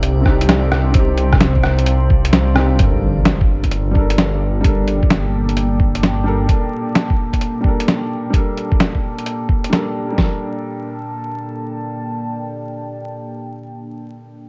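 This short excerpt sounds lo-fi and nocturnal, with a light reverb, a digital ambience and a coat of vinyl crackle lending a rainy, late-night haze. It is future garage at 130 BPM in 4/4, swung on the sixteenths and set in G minor, moving from Cm to Gmadd9 at 2.8 seconds. Two muffled, compressed sampler-style drum kits sit up front, both carrying a small-room character: one plays hi-hat, rim click and snare, while the other joins at 0.3 seconds with a thumpy kick and snare. Meanwhile a menacing, saturated detuned saw bass swells underneath until 6.5 seconds. A deep, moody ambient pad holds dark sustained chords with chorus and its own reverb, and a soft, felt-muted upright piano adds mellow, intimate accompaniment through a low-pass filter and dub echo, both pumping with the sidechain. A very quiet glassy texture of drifting overtones floats in the opening seconds, and a faint electronic impact marks the shift at 2.8 seconds.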